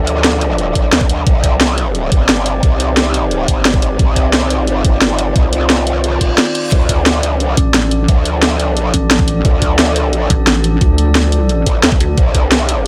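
Driving straight 4/4 at 176 BPM, this dark, tense technical drum and bass excerpt in D phrygian pairs a cracking up-front snare and hi-hat with a knocking, tape-tinged electronic kick in small room ambience, while an aggressive, saturated growl bass with formant filtering and sidechain pumping snarls beneath an eerie, metallic FM drone of sustained chords shifting between Dm and Cmadd9, a brief electronic reverse cymbal at 6.2 seconds, and a heavy, detuned pluck wobble bass joining at 7.6 seconds.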